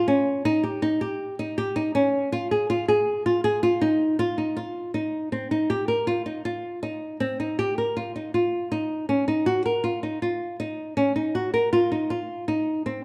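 A solo flamenco guitar opens this short cut from a longer contemporary chamber piece, fingerpicked and placed up front in a playful, shimmering mood. The acoustic tone is warm, and the playing stays between C4 and Bb4 at a brisk 159 BPM in an uneven 5/4 metre with a straight feel, tuned to A4 = 441 Hz. A brief opening passage gives way to a new section at 4.2 seconds, which carries on until the guitar stops at 13.0 seconds. Moderate recital hall reverb, lasting about 1.4 seconds, surrounds the instrument with a sense of space. The production leans dark and warm, lending the playful, shimmering character of the music a rounded, intimate depth.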